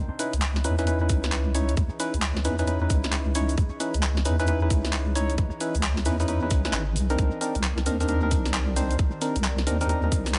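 A deep, wobbling bass opens this bouncy, skippy two-step garage excerpt, sitting up front with a dark, detuned square-and-sine tone thickened by chorus. From 0.2 seconds a hollow, organ-like stab joins with percussive, wave-folded chords washed in chorus and dub echo, while a very quiet, ethereal pad holds mellow sustained harmony far behind. The garage kit brings a cracking, overdriven snare with handclaps and hi-hat in a small room, and a grainy, bright cabasa ticks in the background with dub echo trailing it. A tight, overdriven electronic kick enters at 1.1 seconds and stays up front, giving the swung groove its punch. The harmony rests on a C# minor ninth before sliding to a C minor ninth at 7.0 seconds, all within a lightly reverberant, echo-heavy mix with a soft top end.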